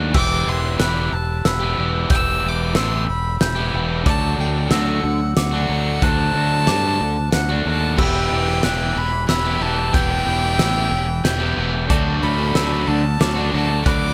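A growling, overdriven fingered bass sits up front in this cathartic, cinematic post-rock excerpt in E minor, moving at 92 BPM in a straight 3/4 between Em and D chords. A loose acoustic indie kit enters at 0.1 s with a fat snare, punchy kick, dark cymbals and a pumping studio room. A bright, scooped distorted guitar plays a picked, compressed riff, and a second crunchy overdriven guitar joins in the background at 8.0 s. A rich, floating violin carries the melody with a soft-attack sul tasto tone and digital delay. A mellow glockenspiel, struck with rubber mallets, rings out bell-like arpeggios through its own delay in a boxy small room, while a very quiet, clean pedal steel guitar adds sustained chords with volume swells and slide. The overall sound is dry, with little reverb.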